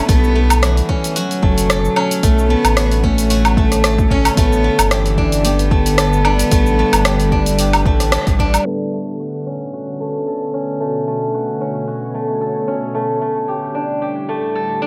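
A bright, silvery steel-string zither played with fingerpicks spins ringing arpeggios up front in this mystical, hypnotic organic downtempo cut from a longer piece, passing through a low-pass filter and tape echo at 112 BPM in 4/4 with a light 16th-note swing, in B minor over Bm9 and A9sus4 chords. An intimate, airy cello carries the melody with light vibrato and a soft sul tasto bow, touched by tape echo, while a tense, detuned string-like drone holds sustained chords beneath, breathing with sidechain pumping and its own reverb. A round, deep analog bass with a nasal edge also pumps against a punchy electronic kick, and a deep house kit of dark hats, rim click, shaker and woodblock, re-recorded in a small room and low-pass filtered, sets a dusky groove. The cello bows out with a band accent at 8.1 seconds, and the bass and drums drop away shortly after. From 8.7 seconds a very quiet bronze singing bowl adds metallic, slowly beating resonance as filter sweeps pass over the zither and the wider mix through to the close at 14.9 seconds, all within a light reverb.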